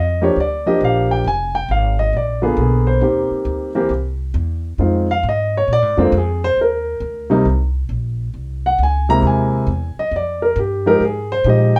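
This is a jazz piano trio performance in a relaxed, warm mood, swinging at a medium tempo in four. A warm grand piano, up front and intimate with its action noise audible, carries the melody as a solo from start to finish across the full 11.8 seconds. Beneath it, a pizzicato upright bass with steel strings supplies a woody, dark low end and sits close in the mix. The passage runs through two statements of the same section, the second beginning at 6.6 seconds, moving through chords such as Gm7, Bb7b9, Eb6, C7alt and Fm9. Recorded with the band playing live in one room, it carries a moderate studio ambience and is cut from a longer piece.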